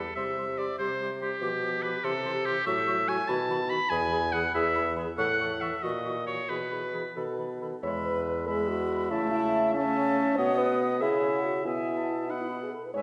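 A spirited, graceful classical-period wind quintet movement in 6/8, cut from a longer piece, with an airy, vibrato-touched silver flute carrying the melody softly in the background from 0.2 seconds. A clear, up-front oboe sings the second line, while a smooth-topped French horn and a mellow clarinet fill in the accompaniment. A close-miked bassoon anchors the bass with light vibrato, all set in the wet, resonant reverb of a concert hall.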